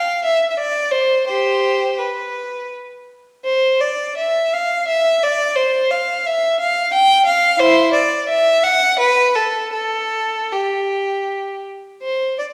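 A clear, up-front solo violin opens at once and plays through to 12.5 s with smooth, even bowing and vibrato, shaping a radiant, dance-like baroque-style suite movement in a rubato three-four, its single line ringing in a recital hall's reverb as if heard from further back in the room, all cut from a longer piece.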